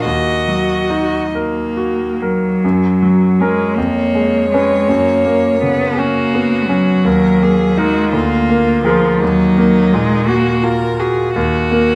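Yearning and elegiac, this slow romantic movement for piano trio unfolds in 6/8 at 44-57 BPM in dotted quarters, in F# major with a flexible rubato feel, cut from a longer piece. A smooth, even violin with vibrato carries the bowed melody, while a focused, up-front cello sings a second line with its own vibrato until 10.6 seconds, over brilliant concert grand accompaniment with deep bass. Close, detailed microphones capture the trio in a reverberant recital hall, and the harmony turns from F# major toward D# minor around 7.1 seconds.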